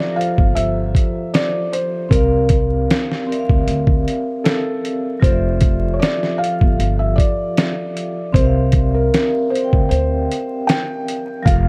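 A felt-muted upright piano carries a soft, intimate melody from the very start, its action noise audible beneath the mellow tone, while a ringing, metallic vibraphone with medium hard mallets and a slow motor vibrato fills in the harmony from a boxy small room. A pitched-down, sampler-style drum kit sits up front with a thumpy kick, a medium-tuned snare and hi-hat, its sound compressed and muffled as if re-recorded in a small space. At 0.4 seconds a pizzicato upright bass joins, woody and dark with gut-string thump. This cosy, nostalgic lo-fi hip hop piece moves with a gentle swing, drifting between Fmaj9 and C7sus4 chords. Light reverb, vinyl crackle and a dusky production give this short cut from a longer piece its vintage glow.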